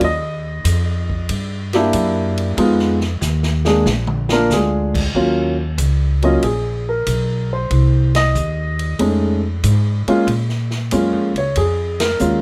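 This jazz piano trio excerpt moves at a cool, swinging 94 BPM in 4/4, tuned slightly low to A4 = 439 Hz. A dark, mellow grand piano carries the melody up front and takes a solo through the opening 5.1 seconds, over harmony that moves from Ebsus2 through altered dominant chords before settling on Ebm7 as the second section begins. Beneath it, a pizzicato upright bass with gut strings sits close and present, its woody, thumpy tone anchoring the low register. The big-band drum kit stays further back, with a boomy kick, a medium-tuned snare, hi-hat, ride, crash and toms heard in a natural studio room, and it breaks into a fill at 3.2 seconds. In the later section the trio hits short accents together, first at 8.0 seconds, all wrapped in a light reverb.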